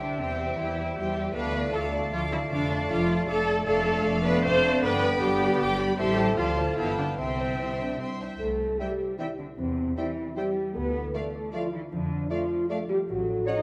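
A playful, whimsical cinematic film cue in C major, moving at 154 BPM in a straight 3/4 with a magical, mischievous air, cut from a longer piece. Distant, vibrato-laden violins carry the melody high in the background while a lush second violin line, a pure silver flute, a present clarinet and a roomy, mellow bassoon weave supporting parts, over a smooth, even viola section, ringing fingerpicked harp arpeggios, expressive soft-attack cellos and a bowed double bass section. From 0.6 seconds a French horn section adds sustained chords, and the whole orchestra sits in a wet scoring-stage reverb as the opening phrase returns at 8.4 seconds.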